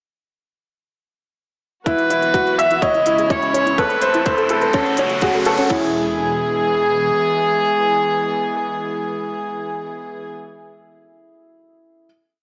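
Hopeful and tender, this short piano and strings electronica piece moves at 125 BPM in a straight 4/4 in E major. A dark, softly bowed viola sits up front with an arching, motif-based melody, floating over a distant studio string section that holds sustained chords with a sidechain pump. A bright, woody upright piano, worn and slightly detuned, carries a 6-step arpeggiated riff that drifts against the bar and rings on alone until 12.1 seconds. In the background, a warbly, lo-fi pluck with chorus and tape echo spins a 12-step arpeggio, while a deep, rumbling detuned saw bass holds the root and a tight four-on-the-floor kick with crisp hats and crash drives the build. A riser enters at 3.0 seconds, and the build resolves at 5.7 seconds onto a final E chord, all bathed in a wet scoring-stage reverb with a small-speaker sound.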